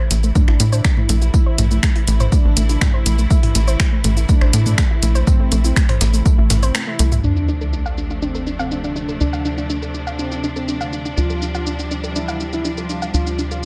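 A lush, distant string section holds sustained chords while a soft, round pluck runs arpeggios through chorus, delay and a cassette-tape tint, with a filter sweep on the pluck, opening this dark, driving melodic techno excerpt in D minor at 122 BPM. Almost at once a tight sawtooth sequencer bass drives beneath them, and a thick, detuned unison lead carries the melody with digital delay. The strings, pluck, bass and lead all pump against the sidechain. The rhythm comes from an overdriven house kit of finger snaps, hi-hat, shaker and toms, low-pass filtered and re-recorded in a large room; a very quiet, compressed breakbeat-style kit of hi-hat, snare and tambourine; and a punchy, overdriven electronic kick sitting up front. The kick stops at 6.4 seconds, and after a brief break and band accent an electronic sub drop lands at 7.2 seconds as the harmony moves from A minor to D minor seven. 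From there the house kit carries on under a filter sweep, and the mix stays dry, with little reverb.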